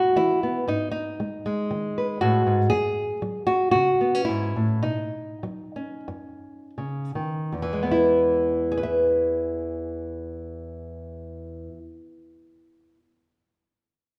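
A nylon-string guitar carries this peaceful, gentle folk piece on its own, fingerpicked with a dark, small tone that sits up front and spans from E2 to E5. Cut from a longer work, the passage is in E major and 4/4 with a straight feel, moving at an unhurried tempo somewhere between 75 and 120 BPM. The harmony moves from E to G#m, then to F#5 at 2.7 seconds and Badd9, with the playing slowing down from 2.7 to 7.5 seconds before settling back on E at 7.5 seconds as a new section begins. The guitar plays until 13.0 seconds. A wet recital hall reverb, with a decay of about 1.5 seconds, surrounds the instrument with the resonance of a church or concert hall.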